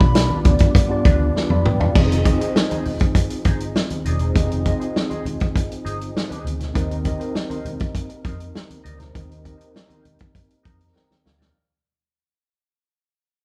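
Up-front, dry soul drums with a tight kick lead this cinematic, bittersweet 1970s-style soul groove in C minor at 100 BPM, alongside a dark, foam-muted fingered bass, a mellow tine electric piano that adds a fill at 10.4 seconds, a slightly broken-up wah guitar riff in the background, a very quiet tonewheel organ with key click and slow rotary speaker, and soft-handed, low-tuned congas entering at 0.2 seconds, the band playing live in a large studio room as the music fades out from 2.0 seconds.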